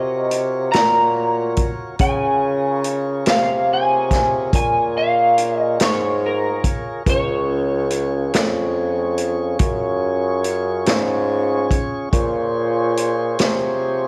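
Lightly reverberant, this mournful, soulful slow blues excerpt in Bb minor moves at 47 BPM in a straight 12/8, with a bright, twangy, slightly broken-up electric guitar through a small old amp carrying the melody under analog chorus until 10.4 s, a mellow tonewheel organ holding dark, round chords through a slow rotary speaker, a bassoon with light vibrato playing the bass line up front, and a vintage drum kit with punchy kick, hi-hat and snare entering at 0.3 s, all over a move from Ebm7 to Bbm7.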